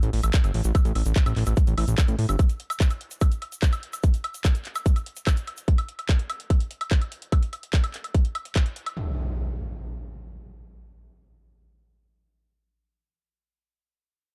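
A fat, detuned sawtooth bass with a saturated filter pluck opens this hypnotic, alien psychedelic trance excerpt and sounds only until 2.4 seconds. A tight, up-front electronic kick enters at 0.3 seconds to drive it, while a layered electronic kit of handclaps, metallic hats and woodblock and a grainy acoustic egg shaker sit behind it from the start. The shaker drops out at 5.7 seconds and the kit runs to 8.9 seconds before an up-front electronic impact takes over at 9.0 seconds. The production is dark and nearly dry.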